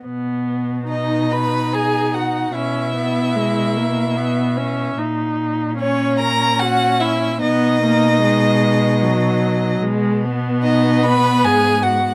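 A rich, smooth violin enters at 0.9 seconds to carry the melody with light vibrato up front in this elegiac, melancholic fragment of a slow romantic string quartet movement in rubato triple time. A focused second violin line enters at the same moment, over a clear viola accompaniment heard from the opening and a vibrato-touched cello bass, each part bowed by a single player and captured closely and in fine detail in a dry room.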